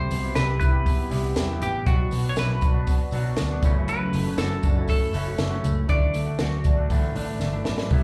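Heard through a club PA with light reverb and the air of a live gig, this short excerpt of jangly indie pop feels youthful and nostalgic over a straight four-beat groove. A bright, clean semi-hollow electric guitar carries the melody, its hollow-body tone colored by phaser and slapback echo before it drops out at 6.9 seconds. Beneath it, a clean, fingered electric guitar with a twangy edge plays accompaniment, while a second guitar through a small old amp sounds slightly broken-up as it picks arpeggios through lush chorus; both guitars share the slapback echo. A vintage muted picked bass gives a dark, round, foam-muted punch, and a compact cocktail drum kit sits up front, dry, with a high-tuned snare and punchy kick, closing on a drum fill from 7.4 seconds. A jingly, band-limited tambourine lingers in the background with its own slapback echo as the harmony moves from Cmaj7 through Bm, F#m7 and Dadd9 to Asus4.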